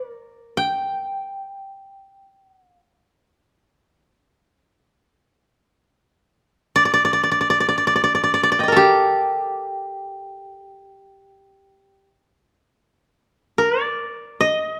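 A solo koto, plucked with fingerpicks, carries this solitary, meditative piece of Japanese chamber music, its mellow, woody tone sitting dry and up front within the moderate reverb of a recital hall. The koto stays within a single octave, from G4 to G5, and its opening material returns at 12.6 s before this brief excerpt is cut off at 14.8 s.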